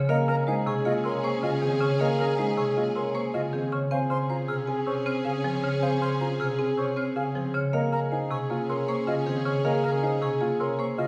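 Propulsive and bright, this minimalist classical pattern music moves at 157 BPM in a straight 5/4, cut from a longer piece and lasting about 11 seconds. A vibraphone played with medium hard mallets carries the melody, its tone metallic and ringing yet dark and smooth, while a marimba struck with hard mallets drives the accompaniment in the low register, woody, percussive and close-miked, sitting dry and up front. A mellow silver flute with soft attack and expressive vibrato spins airy arpeggios high above, joined by the natural, warm arpeggios of a baby grand piano in the middle range. A dark French horn plays a second line on Ab4, distant and roomy in the background, and a lush studio string section sustains rich, evenly bowed chords. The harmony moves from Eb9sus4 to a rootless Bbm7 at 3.9 seconds and back to Eb9sus4 at 7.7 seconds, all set in the wet reverb of a concert hall.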